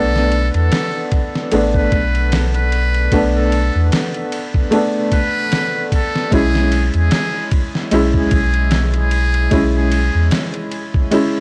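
A dry, gritty hardware recording with vinyl crackle and a digital ambience sets a smoky, hypnotic trip hop mood in this short cut from a longer piece, moving in a loose, lightly swung four. A dusty, sampler-style soul drum kit enters at 0.2 seconds, compressed and up front, with a thumpy kick, a fat snare and ride cymbal, and it carries the sound of being re-recorded in a large room. Beneath it, a deep, round dub sub bass with a fast attack and sustained notes adds tube saturation, while a felt-muted upright piano plays soft, mellow, intimate accompaniment through tremolo, its vintage action noise audible. The solo melody comes from a trumpet with a metal mute, brilliant yet thin and buzzy, shaped with light vibrato, a soft attack and a classical touch, and trailed by dub echo. The harmony rests on Bm7 before moving to C#m/B at 6.3 seconds, and the trumpet and bass fall away at 10.3 seconds as the piano and drums carry on briefly.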